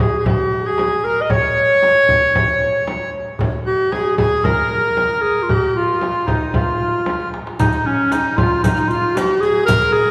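This is an Arabic maqam ensemble excerpt with a longing, melancholic mood: a clear, classical-style solo clarinet sits up front on the melody, while a reedy, hollow accordion, close-miked, dry and full, plays a quieter second line alongside it. A deep, vintage-sounding, band-limited frame drum and a crisp, metal-shell darbuka played with soft hands and heard distant, as if in a large room, carry the straight 4/4 pulse. After a drum fill, a quieter riq with dark jingles joins at 7.6 s, and the whole performance sits in a church acoustic with a long, wet reverb tail of 2.9 seconds.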